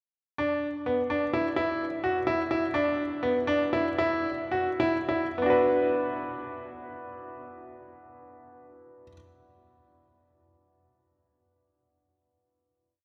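A bright grand piano plays alone in this short contemporary instrumental piece in B minor, its brilliant, intimate tone sitting up front with audible action noise and short sustain as it drives an urgent, restless ostinato in 5/8 at a quick pulse. The chords move from B minor to an open E as the tempo slows from 2.8 to 5.4 seconds, and a final B minor chord rings out from 5.4 seconds. A long cathedral reverb surrounds the piano, placing it in the resonant space of a church or concert hall.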